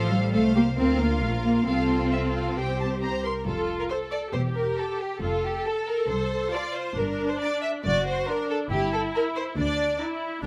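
Stormy and urgent, this quick classical-period movement for string orchestra, cut from a longer piece, sets a smooth, even violin melody high above a focused, up-front second violin line, clear violas, rich cellos and an expressive double bass section, all bowed with vibrato and captured through close, detailed microphones with light reverb.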